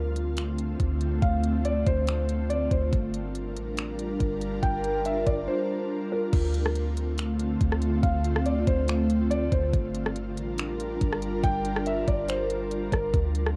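A hazy, spacious piece of atmospheric cloud-rap cut from a longer track, it moves in a half-time feel over a slow sway between Dm7 and Gm7. An ethereal, detuned pad sits up front with sustained chords, its slow-attack tone thickened by ensemble chorus, soaked in its own reverb, pumped by sidechain and tinted by cassette tape. Beneath it a soft, round 808-style bass supplies deep, dark sine tones that decay after a fast attack. The electronic R&B kit, also up front, enters at 0.2 seconds with a knocking kick, smooth hats, finger snaps, rim clicks and a crash, all colored by cassette. From 1.2 seconds a felt-muted upright piano carries an intimate, mellow melody through tape echo and plate reverb. A brief silent gap from 5.5 to 6.3 seconds splits the piece before the progression returns, and the whole sounds like a home cassette recording with moderate booth ambience.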